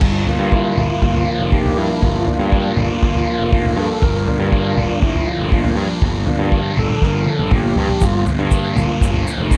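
A double-tracked, up-front fuzz guitar riff, punchy overdriven picked bass and a cloth-damped, thuddy drum kit with a fat snare and dark cymbals open this mysterious, hypnotic psychedelic rock excerpt in G dorian at 120 BPM, joined at 0.3 seconds by a clear tonewheel organ soloing in sustained chords with key click and a slow rotary speaker over a Gm7 to Bb/G vamp, while a drum fill arrives at 7.0 seconds and a grainy, bright egg shaker enters at 8.0 seconds, all in a light studio reverb.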